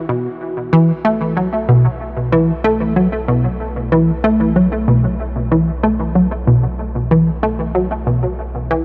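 A huge ambient reverb with an 8.5-second tail surrounds this short cut from a longer piece of expansive, hypnotic, sequencer-driven space music in a straight 4/4 at 94 BPM, tuned to A4 = 442 Hz. Up front, a punchy, funky analog bass riff with a fast-attack filter pluck, built from sawtooth, pulse and wave-folded triangle tones, enters at 0.1 s and plays between B2 and A3, each note decaying through analog chorus and analog delay. Beneath it, a round sine sub bass sits deep and low on B1, its sustained tone quieter in the mix.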